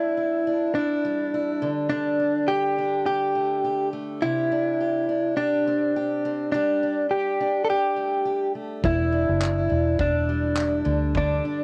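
A light reverb and the character of a home cassette recording frame this tender, reflective acoustic pop fragment, cut from a longer piece. From 0.0 seconds, a clean, direct-recorded electric guitar carries the melody up front, its picked notes compressed and warm, over a parlour-sized steel-string acoustic guitar whose fresh strings give the picked accompaniment a warm ring. The harmony drifts through Em7, Dsus4, Csus2 and Gsus2 with a lightly swung sixteenth-note feel. At 8.8 seconds a vintage, foam-muted fingered electric bass enters, dark, round and punchy near the front of the sound, alongside a loose indie drum kit of handclaps and a tight kick that sits distant and roomy with a rolled-off top. The two guitars carry on together to the close at 11.6 seconds, leaving a tender, reflective impression.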